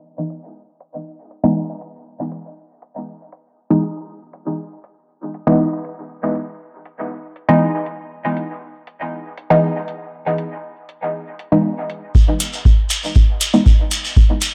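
Dub techno at 119 BPM in 4/4, cavernous and nocturnal, built on an Emaj7 chord and cut from a longer piece, with a filter sweep running through the first 12.1 seconds. Metallic, tape-softened electronic hi-hats enter at 0.3 seconds, followed by a muted, deep sawtooth chord stab with a fast, plucked attack, sitting up front and steeped in chorus, phaser, sidechain pumping and dub echo. At 12.1 seconds a deep analog kick drum lands prominently, joined by a grainy, distant shekere set in a large room, all within light reverb and digital ambience.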